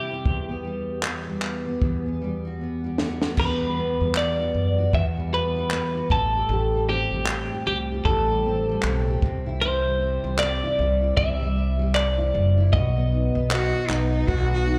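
A 77 BPM pulse in 4/4 with a gentle sixteenth-note swing carries this tender, wistful acoustic pop piece in E minor, cut from a longer performance and heard as a live club gig through the venue's PA with light reverb. A bright, twangy twelve-string electric guitar carries the melody up front, clean and compressed with a slapback echo, over a dark, full-bodied fingerpicked jumbo steel-string acoustic that is double-tracked and also touched with slapback. A compact cocktail drum kit comes in at 0.3 seconds with a punchy kick, a high-tuned snare, handclaps and crash cymbal, its rolled-off top giving it a smooth, small-room character, and a drum fill leads into the second section at 3.4 seconds. There the upright bass enters, woody and growly, plucked on steel strings and sitting up front. The harmony moves from Emadd9 through Am7 and C to B, and at 13.5 seconds a single bowed cello joins with a rich, expressive line full of vibrato, soft attacks and portamento, carrying through to the cut.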